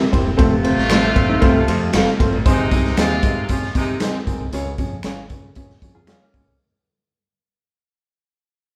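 A live, one-room recording in a moderate stone-room reverb carries this driving, passionate 1960s-style soul fragment at 116 BPM, with a raw garage drum kit and its punchy kick up front beside a dark, woody upright piano and a bright fingered electric bass in the background. A tight vintage horn section with light vibrato plays a second line until 4.0 seconds, while a clean, fingered electric guitar riff, slightly broken-up stabs from a guitar through a small old amp, and distant finger snaps fill in over chords moving from F to Ab to Db. The recording fades out from 2.5 seconds.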